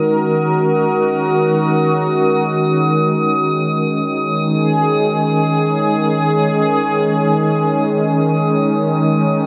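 A warm analog pad stands up front in this ambient excerpt, holding sustained chords built from detuned sawtooth tones with a soft attack, its bright, smooth sound colored by chorus and tremolo. The piece moves in free time, resting on a single D#m7 chord across its 9.5 seconds, and the mood is spacious and melancholic. Far beneath it in the mix, a drifting glass-harmonics texture sits high on D#6, a calm sine tone with slow attack and long release whose glassy overtones wander through chorus and its own built-in reverb. Both parts sound together from the first moment to the last, cut from a longer piece. A wet echo chamber reverb with a 2.4-second decay surrounds the whole, giving the sound a deep, hanging space, and the tuning sits slightly sharp at A4 = 445 Hz.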